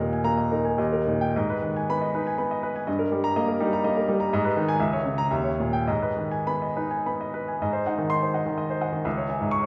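A clear, polished baby grand piano carries this short passage from a longer romantic character piece for solo piano, moving in a flexible, rubato three-beat lilt that feels bittersweet and stormy as it spans from C#2 up to C#6. The opening stretch circles through minor harmony, a suspended chord and a tense diminished colour before a new section arrives at 7.6 seconds, turning to a G#7 and then C#m. A wet recital hall reverb surrounds the instrument, placing the listener further back in the room.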